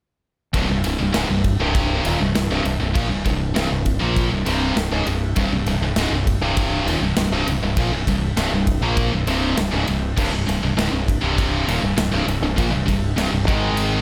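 A small room ambience surrounds this heavy metal excerpt, cut from a longer piece, which moves at 100 BPM in a straight 4/4 and sits in C minor with a relentless, epic mood. A high-gain distorted guitar, picked and double-tracked, carries the riff up front from 0.5 seconds, ranging from C2 to Bb3 with a bright, distorted edge. Beneath it, a growling fingered electric bass, overdriven and heard both direct and amped, holds the low end between C1 and Bb1. A big acoustic rock drum kit in a bright stone room drives the part with a punchy kick, a medium-tuned snare, ride and crash cymbals, and it stops at 13.9 seconds. The harmony rests on C5 for nearly the whole passage before shifting to Ab5 at 13.5 seconds.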